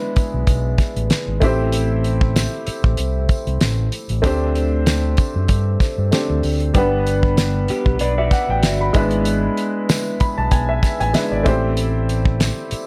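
A concert grand piano opens this short cut from a lush, smooth 1970s-style soul groove, sitting up front with an intimate, natural tone, deep bass and audible action noise as it carries the accompaniment over chords that move from E7 through Am7, D7sus4 and Gmaj7. Almost at once the rest of the band settles in at 96 BPM in 4/4 with a gentle sixteenth-note swing: a damped 1970s drum kit, dry and mid-forward with a fat snare and tight kick on hi-hat, kick and snare, alongside an overdriven fingered electric bass that sounds round, amped and punchy. A bright, jingly tambourine rings in the background with a live-room quality. At 7.7 seconds an electric guitar through a small old amp slips in with a brief riff, its twangy, slightly broken-up, lo-fi sound compressed and touched with subtle chorus. The piano then takes a fill from 9.9 seconds as the harmony passes through E7/G# back to Am7. The whole mix is wrapped in a small-room ambience with a dark, warm production feel.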